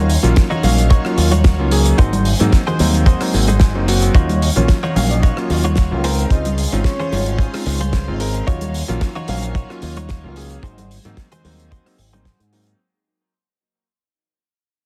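Sensual and cosmic, this nu-disco excerpt rides a tight, up-front kick drum and a punchy, envelope-filtered fingered electric bass pumping with sidechain, joined by a damped 70s drum kit's fat snare, hi-hat and rim click, soft-handed congas in the background, a bright, clean electric guitar riff dressed in lush chorus and tape echo, a warm vintage electric grand piano with clangy bass and long sustain, a very quiet sawtooth string machine holding sustained chords, and a dark, round octave-layered synth lead that drifts in at 4.6 seconds, all inside a heavily compressed radio-like sound that begins fading out at 4.1 seconds.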